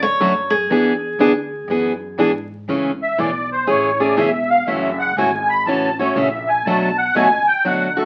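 Crackling like a very old 78 rpm record and set in a wet small room, this short cut from a longer piece is playful, swinging acoustic jazz manouche in A major at 121 BPM. A bright, up-front picked steel-string guitar carries the melody until 2.5 seconds, over a boxy plugged-in acoustic guitar accompaniment with audible finger squeak and a woody, thumpy pizzicato upright bass on gut strings. From 3.0 seconds a reedy, shimmering musette accordion takes the solo, smooth and dark over chords moving from Amaj7 through F#m7 to Bm7.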